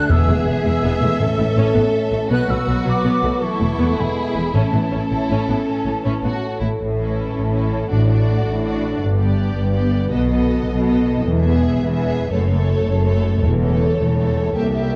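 A dark, lush orchestral sound in a moderate concert hall opens this soaring, triumphant excerpt of heroic adventure film score, moving in a straight 12/8 at 108 BPM in A major. Expressive, vibrato-rich violins carry the melody over a second, focused violin line, while airy, crisp flutes add a high counter-line and shadowy horns hold background chords until 6.6 seconds. A ringing, fingerpicked harp arpeggiates alongside portamento-tinged violas, smooth, even basses and soft-attack cellos, with round, very quiet timpani on soft mallets dropping out at 8.4 seconds before a brief return at 13.4 seconds, as the harmony moves through D/A, G and B7 toward a close on A/E.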